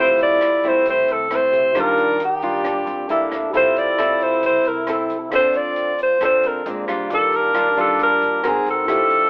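Romantic and sunny, this short bossa nova fragment moves at a straight, easy lilt in four. A breathy alto saxophone carries the melody up front, its subtone and scooped notes giving it a vintage jazz voice, while a mellow bass clarinet with light vibrato sings a close-miked second line beneath it. A fingerpicked nylon-string guitar with a dark, classical tone and a very quiet, intimate grand piano, its action noise audible, fill out the accompaniment over chords such as Fmaj7, Ebmaj9 and Bb9. In the background, a woody, growly pizzicato upright bass anchors the low end, and an open jazz kit with hi-hat, rim click and a boomy kick enters at 0.2 s alongside a grainy egg shaker that is barely audible. The whole ensemble sits in a small room, heard from further back with a telephone-like sound.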